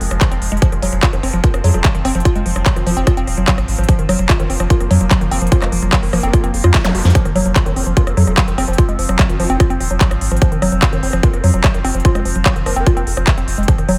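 Psychedelic trance at 147 BPM in F phrygian with an alien mood, built on a punchy, up-front electronic kick and a big-room kit of huge snare, crisp hats, handclaps and rim clicks under a deep, round analog bass, while a woody, wave-folded pluck riff with tape echo and sidechain pumping rides over a nasal overtone-sweeping drone, a resonant vowel-sweep wobble bass murmurs in the background, and a brief zap lands inside the drum fill at 6.8 seconds.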